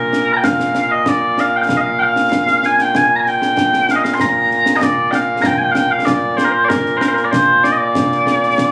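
Captured on a phone in the room and then given a light studio reverb and compression, this is a short cut of proud, stirring Scottish pipe music. Mellow small bagpipes carry the melody from the very start, sweet and continuous with vibrato, sitting up front as the solo voice and ranging from Bb2 to C6 in Bb mixolydian. A concert snare drum and concert bass drum join at 0.1 seconds, acoustic and dry, with bright cymbals, placed lower in the mix beneath the pipes. The tune moves at a steady 96 BPM in a straight 4/4. A new section begins at 5.4 seconds and carries on until the cut ends at 8.7 seconds.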